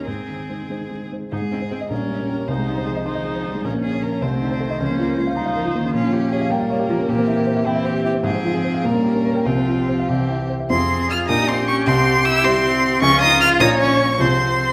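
Dramatic and restless, this quick classical-period movement for piano quartet, cut from a longer piece, moves in 6/8 with a flexible, rubato feel. An up-front, rich violin carries the melody with smooth, even bowing and vibrato, while a close, warm cello sings a second line, sliding expressively between notes. A focused viola adds bowed accompaniment with its own vibrato. The dark, mellow baby grand sits forward and intimate, its short sustain and audible action noise giving the accompaniment a natural, tactile quality. All four instruments play throughout, and a fresh passage begins at 10.7 s, with the whole group bathed in the wet reverb of a recital hall.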